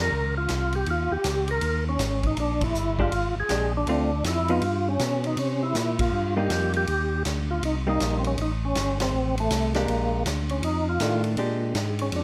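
Soul jazz organ trio in Bb mixolydian at 160 BPM, swinging and greasy, cut from a longer piece, where a fat, lightly overdriven tonewheel organ with key click and second-harmonic percussion carries the melody up front through a slow rotary speaker, chorus vibrato and plate reverb, while a full, clean organ bass line sits beside it. A big-room drum kit with a punchy kick, medium-tuned snare, hi-hat and ride joins at 0.5 seconds, and a dark, compressed hollow-body guitar adds fingered accompaniment from 3.0 seconds. Band accents punctuate the groove over chords moving from Eb13 through Bb6, Dm7, G7#11, Cm7, C5/G, Bb6 and F6 before settling back on Bb6.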